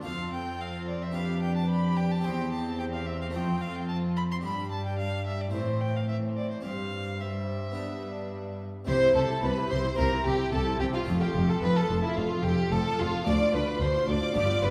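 In a straight 4/4 at 109 BPM, this lively, brilliant baroque-style concerto movement in C major is cut from a longer piece, with a rich, focused solo violin up front carrying the melody over a bowed cello section while a violin section with a smooth top adds its own melody line and a warm second violin section plays a second line in the background. A distant, even viola section and a dry, close-miked Flemish-style harpsichord with octave strings fill in the accompaniment, and a distant double bass section joins the bass at 8.9 s as the music moves into its second section. The ensemble sits in a reverberant recital hall, heard from further back in the room.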